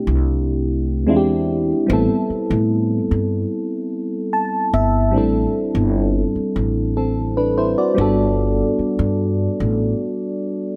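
A mellow FM electric piano opens this short cut from a longer contemporary R&B piece, its round, dark tone carrying a soft chorus shimmer and a faint noise layer beneath each fast-attacking, decaying chord. An upright bass joins almost at once, plucked pizzicato with a woody, growly character that sits up front alongside the keys. At a slow, straight 74 BPM in 4/4, tuned to A4 = 438 Hz, the mood is one of late-night longing. The harmony moves from C69 through E7alt into Am9, and the electric piano slips in a brief fill between 3.9 and 5.1 seconds before the progression settles on D7sus4 and finally Gmaj7. The bass drops away at 9.9 seconds, leaving the piano to ring on until 10.8 seconds in a light studio reverb.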